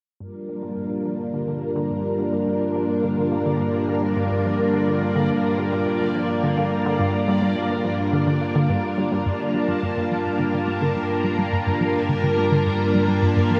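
A straight 4/4 pulse at 106 BPM drives this mysterious, cosmic excerpt of ambient, sequencer-driven space music in G minor, where a lush, up-front string machine holds sustained Gm7 chords under a filter sweep while a round, detuned analog pluck riff with 12-bit grit and tape echo fades in alongside a bubbling, resonant stepped-filter texture, a warbling analog drone bass enters at 1.5 seconds, and the pluck takes its own filter sweep from 9.3 seconds, all soaked in a dreamy 3.0-second hall reverb.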